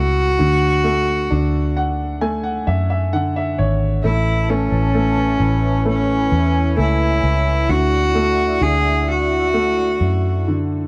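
A rich, nasal bowed cello with light vibrato carries the melody from the start of this hopeful, tender pop ballad excerpt, over a clear concert grand piano with a short-sustain fill at 1.3 seconds and a round, foam-muted fingered electric bass up front, while a smooth, detuned analog pad with chorus enters softly in the background at 4.4 seconds, all in a dry, close 1970s-style studio sound.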